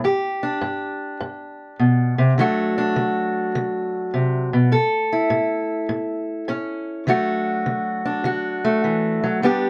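A fingerpicked steel-string acoustic guitar with a dark, boxy parlour tone plays alone and up front in this soulful, swaggering blues excerpt, swung at 102 BPM in D major. The guitar moves through G, D and A before settling back on D at 7.1 s for a brief second section, spanning G2 to A4 within a moderate studio reverb.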